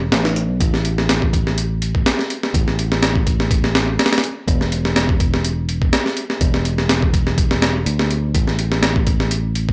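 Breakbeat at 124 BPM in 4/4 with a light 16th-note swing, this gritty, funky excerpt pairs a compressed, sampler-style drum kit (thumpy kick, high-tuned snare and hi-hat, re-recorded in a small room and placed up front) with a dark, round, punchy fingered electric bass ranging from E1 to D2. The bass starts at 0.0 seconds and the drums join at 0.1 seconds, both running to 9.7 seconds. The sound is dry and hardware-rough, with little reverb, and the tuning sits slightly sharp at A4 = 441 Hz.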